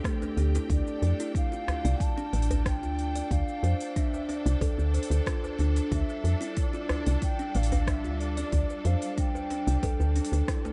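Meditative and earthy, this organic downtempo piece in D minor moves at 92 BPM in a straight 4/4, with a bright, ringing kalimba playing arpeggios through delay and shimmer reverb while a distant, lush string section holds sustained chords with sidechain pumping. A deep, up-front electronic kick and a layered deep house kit of smooth hi-hats, rim clicks and shaker drive the groove, joined at 0.2 seconds by a tight, cracking djembe played with soft hands in the background and at 0.4 seconds by a round, woody FM bass that pumps with sidechain compression. From 0.7 seconds a pure, hollow bamboo bansuri with a soft attack and vibrato floats above, its tone echoing into shimmer reverb within a dark, small-room production.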